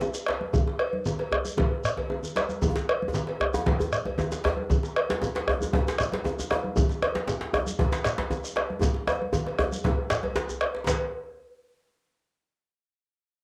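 A light-reverb cassette home recording captures this powerful, festive West African drum ensemble excerpt in straight 4/4, speeding up as a round, up-front bombo plays alongside ringing congas, a tight, cracking djembe, a grainy shekere and a distant metallic cowbell, with a second djembe bearing metal rattles entering at 2.7 seconds and drum fills breaking out at 2.0 and 8.8 seconds.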